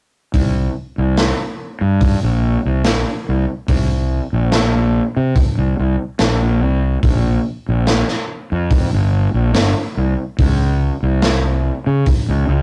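A straight 4/4 pulse at 72 BPM drives this dark, trippy psychedelic rock excerpt, where a round, overdriven fuzz bass fingered between G1 and Db3 sits up front beside a gritty, saturated breakbeat kit of hi-hat, tight kick and medium-tuned snare with a rolled-off top, both entering at 0.3 seconds in a rough rehearsal-room sound with light reverb and warm saturation.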